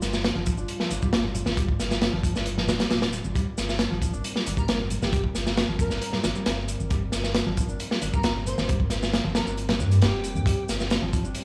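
A dry, gritty small-room recording opens this raw, energetic breakbeat cut in G minor at 135 BPM, where a crunchy, up-front acoustic kit of tight kick, medium-tuned snare and hi-hat sits over a deep, saturated sub bass, a background shaker and a moody, nasal analog pad with chorus, sampler grit and sidechain pumping, while low-tuned congas and a dark, compressed electric guitar riff with overdrive and tape echo join at 0.4 seconds, and an airy, detuned lead with vibrato, portamento and a small-speaker tone carries the melody from 4.6 seconds.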